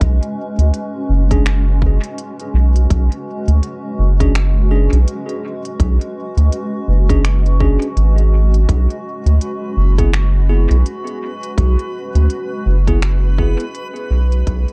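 Ambient dub fragment, deep and spacious, where a round, nasal analog bass sits up front beneath a tight electronic kick, smooth hats and finger snaps trailing dub echo, a cloudy granular pad in built-in reverb, bell-like electric piano stabs from 1.3 seconds, and a reversed, dreamy granular texture arriving at 9.4 seconds before the fade-out that begins at 12.5 seconds.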